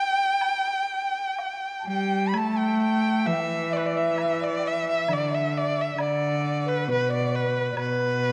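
A dark production, set in a moderate recital-hall reverb, frames this graceful, festive excerpt of Chinese traditional chamber music, moving in a rubato 4/4. Up front, a focused, clear erhu carries the melody with vibrato and portamento, while a pure bamboo xiao with a crisp attack and its own vibrato adds a second line in the background, and a bright, close woodblock sits softly behind them from 0.4 seconds. At 1.9 seconds, a rich, reedy cello with a gut-string period tone enters up front as a low second line, shortly before the music moves into a new section at 2.3 seconds.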